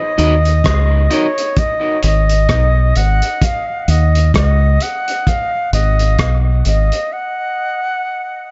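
Hypnotic and deep, this dub reggae excerpt rides a swung sixteenth-note feel, with a bright, reedy concert flute carrying the melody up front through tape echo, its soft attack and vibrato drifting over the groove. An electric guitar at the edge of break-up adds a scooped, echoed accompaniment only for the opening 1.3 seconds, while a dark, round fingered bass sits forward and a cloth-damped, muffled drum kit of kick, hi-hat and rim click thuds along with a gritty, lo-fi character. The bass drops out at 6.9 seconds and the drums at 7.1, leaving the flute alone for a final break in an echo-heavy mix with light small-room reverb.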